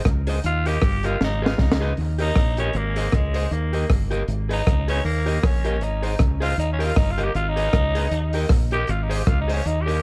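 Bouncy and cheerful, this swung ska excerpt at 156 BPM in Eb mixolydian sets a crunchy, saturated breakbeat kit with a punchy kick, high-tuned snare, rim clicks, hi-hat and a fill at 1.2 seconds against a round, up-front fingered electric bass and a slightly broken-up electric guitar through a small old amp, while a raspy, vintage tenor saxophone with vibrato and dub echo solos from 0.5 seconds over a cycling Eb, Abm and Ab progression in a small room.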